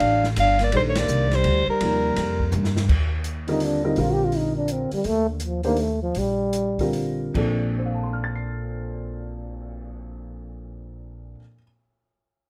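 Hypnotic and open, this modal jazz excerpt swings in 3/4 at roughly 142-167 BPM, cut from a longer piece and captured dry in a small, airy room. A soprano saxophone with light vibrato and a subtoned, smooth top carries the melody at first, while a breathy, whispered trombone plays a second line beneath it before taking a solo from 2.9 seconds, with the tempo slowing from 5.0 toward 7.3 seconds. Woody, thumpy pizzicato upright bass on gut strings anchors the low end, and a mellow, vintage baby grand piano with audible action noise enters at 0.7 seconds to accompany. The acoustic drum kit brings dark cymbals, a medium-tuned snare, a boomy kick, hi-hat, ride, crash, toms and a cymbal swell, with an early band accent and a drum fill just before the trombone solo. The harmony rests on Ebmaj9 before moving to Bbmaj9.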